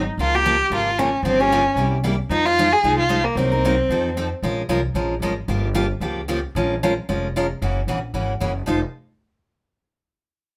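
An up-front bowed violin with vibrato and portamento carries an expressive, fiery melody in F minor until 4.3 s, over bright, full-bodied picked steel-string acoustic guitar and dark, woody pizzicato upright bass that continue to 8.8 s, in a virtuosic jazz manouche swing at 226 BPM with light reverb, cut from a longer piece and moving through chords such as Gm7b5, C7 and Bbm9.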